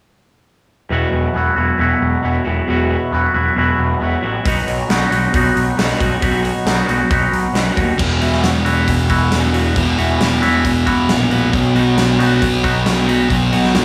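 A thick, distorted fuzz guitar riff arrives at 8.0 seconds and dominates this restless, bittersweet stretch of quiet-loud alternative rock, cut from a longer piece and moving at 136 BPM in a straight 4/4. Before it, from 0.9 seconds, a twangy, clean electric guitar plays arpeggios through phaser and analog delay, while a growly, overdriven fuzz bass holds the low end beneath it. The huge arena drum kit enters at 4.5 seconds, with a punchy kick, a medium-tuned snare, hi-hat and bright crash cymbals in a big, natural room. The chords alternate between Esus2 and B, first in the quieter opening section and again once the heavier second section kicks in with the fuzz riff. Light reverb and a small room ambience frame the parts, with the guitars sitting up front.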